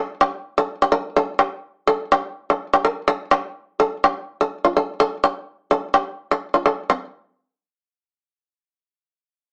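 This afrobeat piece is driving and hypnotic, moving in 4/4 with a light swing on the sixteenth notes. A lone acoustic bluegrass banjo, played with fingerpicks, carries it with arpeggios sitting up front in the mix. Its tone is twangy and percussive, staying in a compact middle range between C4 and Bb4. The banjo plays until 7.0 s, just after the music shifts into a new section at 6.9 s that runs on to the close. The sound is that of a rough rehearsal room, with a wet small-room reverb, tube saturation and a small-speaker character, and the clip is cut from a longer piece.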